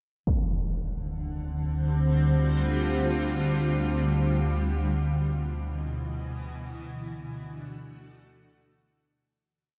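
Desolate and ominous, this short dark ambient drone piece in free time, tuned to A4 = 444 Hz, opens at 0.3 s with a huge, bright impact softened by a low-pass filter. From 1.0 s, a detuned analog drone of sawtooth and pulse waves with pulse-width modulation and chorus sits up front between D2 and D3, alongside a cloudy, blurred granular pad of sine tones carrying built-in and shimmer reverb through slowly shifting chords from Dm to Bm. Both sustained layers swim in a vast, cavernous reverb, and the piece fades out from 4.9 s.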